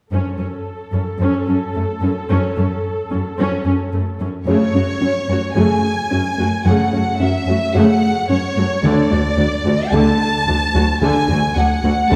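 Heard from further back on a scoring stage with a 1.6-second reverb, this tense, relentless cinematic excerpt moves at 110 BPM in F# minor. It opens with a lush viola section and a smooth-topped cello section bowing with vibrato over F#m. At 4.5 s a focused, up-front violin section takes the melody while a glassy, wave-folded synth pluck with chorus plays arpeggios in the background, and the harmony shifts to D at 8.8 s.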